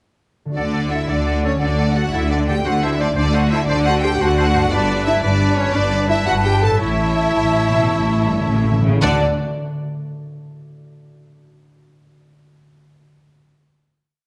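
A ringing concert harp opens with thumb-plucked rolled chords at 0.5 s, and a soaring, adventurous heroic film theme in a straight 12/8 unfolds over it. A close, smooth studio violin section carries the tune, doubled at the octave by lush symphonic violins; airy flutes and a punchy solo oboe add repeated-note chords in the rhythm of the tune, and a focused viola section doubles it in unison. Soft-attack French horns hold distant sustained chords, bowed cellos give bass on the beats and answer at phrase ends, an expressive double bass section sits up front with portamento, and calf-head timpani strike single notes before a fill at 6.8 s as the music slows toward a final chord at 9.0 s on a moderately reverberant scoring stage.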